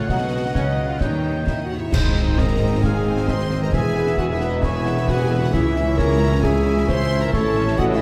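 Cinematic, heroic adventure film score, this full-orchestra excerpt moves at a brisk, straight four-beat pulse with an adventurous, heroic mood. A very quiet, lush violin section carries the melody with soft-attacked, expressive vibrato, while a second, clear and intense violin section rides higher alongside a roomy, distant solo oboe and a dark clarinet in the background. An airy, hollow little flute group adds a crisp-edged line only until 1.5 seconds. Beneath them, violas and a rich, smooth cello section fill the middle and low strings, a woody double bass section anchors the bass, and a punchy dark tuba joins it from 1.9 seconds. Dark French horns and tight, bright trombones hold sustained chords in the background, a mellow harp rings out very quietly in fingerpicked arpeggios, and concert snare, bass drum and dark-toned cymbals sit in the background. At 1.9 seconds the band lands a strong accent, with close, dry clash cymbals and bass drum up front, as the harmony shifts to A-flat and the whole orchestra moves into a second section bathed in a wet scoring-stage reverb.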